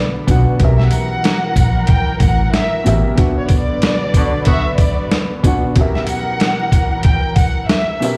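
A woody, tape-worn upright piano and a dark, lush string section open this gritty boom-bap hip-hop excerpt in B harmonic minor at 93 BPM with a swung 16th feel, joined at 0.3 s by a compressed, pitched-down sampler drum kit with a thumpy kick, a round, foam-muted electric bass that drops out at 3.0 s, and a jingly tambourine in the background, while an expressive violin section carries the melody with vibrato and portamento through analog delay and a distant horn section adds brief stabs at 4.2 s, the mix set in a large, roomy reverb over vinyl crackle.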